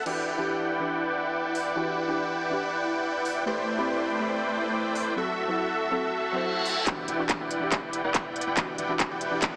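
Bittersweet and dreamy, this short future bass passage moves at 141 BPM in a half-time 4/4 feel, centred on E minor with chords drifting from Em9 through Am11 and F#m7b5 before settling back on Em9. Up front, a huge, thick supersaw of detuned sawtooth layers carries the riff, its compressed sustain pumping against the sidechain while a low-pass filter and tape echo soften its edges. Beneath it, a soft, round pluck with a gentle, dark character plays the accompaniment, lightly chorused and pumping in the same way. A trap drum kit with crisp hats, handclaps and crash cymbal runs throughout, joined at 6.9 seconds by a distorted, layered electronic kick and a deep, mellow 808-style bass sustaining a low E in the background as the build-up and drum fill begin. A reverse cymbal and riser enter at 6.2 seconds to lead into that lift, and a moderate shimmer reverb with a long tail bathes the mix, which has a small-speaker sound.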